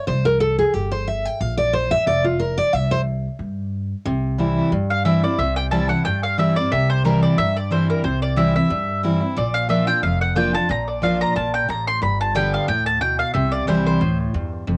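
Up-front, double-strung mandolin carries the melody from 4.9 seconds in this virtuosic, rustic swung bluegrass clip, after a full-bodied dreadnought steel-string guitar opens with a picked solo and then carries on as accompaniment, while a thumpy, woody pizzicato upright bass holds down the low end, the mandolin tinged with analog delay and the guitar and mandolin both with a cassette-tape character, all under light reverb on a home cassette recording.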